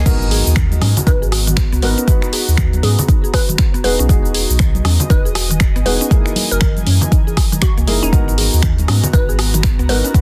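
Smooth and late-night, this deep house excerpt opens on a drop marked by a very quiet electronic swell and impact, with an up-front deep electronic kick, a drum kit of dark hats, snaps, rim clicks, cabasa and crash, soft-handed congas in the background, a round sine sub bass, felt-muted upright piano stabs with audible action noise, woody FM plucked arpeggios, an airy breathy pad, and a glassy wavetable pluck melody with 12-bit sampler grit entering at 1.1 s, all over a swung groove moving through G#m9, Emaj9 and F#13 in a dense, heavily limited and dry mix.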